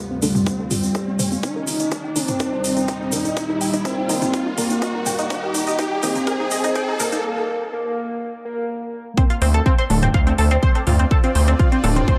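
A straight 4/4 pulse at 124 BPM drives this cinematic, melancholic melodic techno in D phrygian, where a punchy, up-front electronic kick arrives at 0.5 s beneath a house kit of metallic hats and toms and a grainy, distant egg shaker; over Dm7 and Eb, a thick, dark unison lead with vibrato and dub echo, tight chorused arpeggios and a morphing, phaser-tinged wavetable pad pump under sidechain, very quiet muted dub chord stabs sit low, and filter sweeps on the arpeggios and pad join an electronic riser to build toward a break at 7.2 s, before a gritty, saturated synth bass lands at 9.4 s for the drop in an echo-heavy mix with spring reverb.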